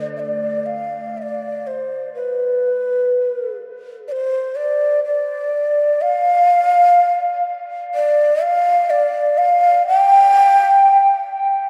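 Drenched in a wet plate reverb and heavy echo, this spacious, melancholic ambient excerpt at 62 BPM in D dorian sets a lone breathy, hollow bamboo shakuhachi carrying the melody with a soft attack and a straight tone through dub echo, fading in from 0.2 seconds until 11.7 seconds.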